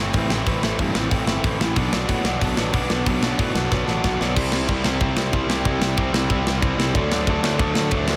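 A bright, double-tracked distorted electric guitar riff and a growly, fuzz-laden picked bass open this angry, raw punk rock excerpt, with a tight acoustic drum kit, its tight kick and medium-tuned snare up front in a big room, joining almost at once on kick, snare, hi-hat, ride and crash. The guitar sits forward over the overdriven bass as the chords move from Am to Bm, and a drum fill from 3.7 to 4.4 seconds leads into a second section moving through C to D. Light reverb lends a touch of space to the aggressive, straight-ahead drive, and the passage is cut from a longer piece.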